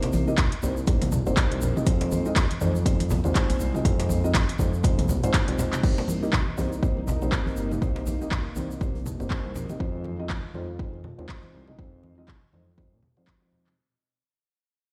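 Spiritual and hypnotic, this afro house excerpt moves at 121 BPM in 4/4 with a swung sixteenth-note feel, circling between Cm7 and Fm7. An overdriven electronic kick sits up front with a deep, layered punch, joined by a deep house kit of metallic hats, handclaps, toms and crash cymbal, also overdriven and re-recorded in a large room. Beneath it, a smooth synth bass with a fast attack pumps against the sidechain, while a felt-muted upright piano plays dark, mellow stabs through a low-pass filter and digital delay. Hand percussion fills the background: a warm, deep djembe with metal rattles, close congas, and a grainy, bright egg shaker that stops around 9.8 seconds, while a woody marimba with soft mallets is barely audible for the opening second. At 5.8 seconds a detuned analog pad enters with slow-attack sustained chords, chorus and sidechain pumping, as the piece begins a fade-out. The whole mix sounds as if played on a big sound system in a bare room, with a large studio reverb.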